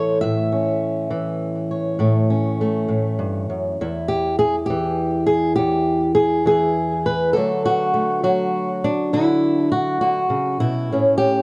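A dark, lightly reverberant recording places a lone fingerpicked acoustic guitar up front, its old strings and ladder-braced body giving a woody, boxy tone. The style is acoustic country blues, gritty and laid-back, moving in an unhurried 12/8 of dotted-quarter pulses with a straight feel. The guitar covers a span from E2 to E5, playing on its own. It opens on an A chord, steps away from any stated chord at 3.8 seconds, settles onto D at 7.3 seconds, and returns to A at 10.9 seconds. This brief passage is cut from a longer piece and lasts just over 11 seconds.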